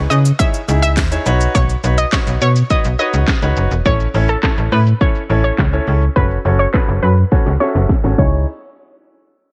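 Dry and close, with little reverb, this short dance-pop cut sits under a low-pass filter and a filter sweep that runs from the start to 8.5 seconds. At 104 BPM in a straight 4/4, it feels confident yet bittersweet, moving through C#madd9, Badd9, A and F#m before returning to C#madd9. A snappy, slap-like FM bass with a metallic attack sits up front in the mix, pumping with the sidechain, while a bright, brilliant concert grand piano plays short-sustained accompaniment in the middle register, also pumping. An analog pluck carries the melody with a round, warbling vintage sawtooth tone, thickened by chorus and trailed by digital delay. The house drum kit is punchy and up front, with a cracking snare, metallic hats, handclaps, shaker and crash over a tape-warm, small-room character, and a drum fill starting at 7.3 seconds closes the phrase before the music breaks off.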